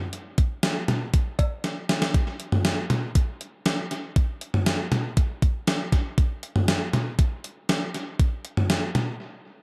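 A straight 4/4 pop groove from a gated 80s digital drum machine sets a nostalgic, bright mood in this short cut from a longer piece, its thumpy kick, gated-reverb snare, hi-hat, cowbell and toms sitting up front with a sampler-style, small-room character and tape echo in an echo-heavy mix, as a drum fill at 1.6 seconds leads into the main stretch before the drums stop at 9.1 seconds for a brief break.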